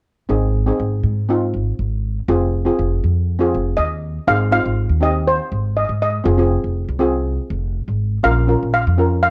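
Festive and sunny, this calypso excerpt moves at 121 BPM in a straight 4/4 in Ab major, with an airy double-seconds steel pan struck with medium rubber sticks comping over Ab6, Fm7 and Bbm chords beside a woody pizzicato upright bass strung with steel. At 3.8 seconds a shimmering lead pan enters up front with the melody, its notes trailed by a slapback echo. The sound is dry and close, colored by the worn, warbling pitch drift of old cassette tape.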